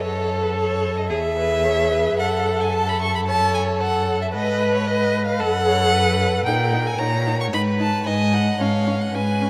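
A string quartet begins together in this cheerful, lively classical-period movement at a quick 112 BPM with a rubato feel, the close, soft-attacked first violin singing the melody up front over a smooth-topped second violin line and viola accompaniment while a rich cello anchors the bass, each player bowing with vibrato and expressive portamento, all bathed in the long, wet echo of a vast cathedral.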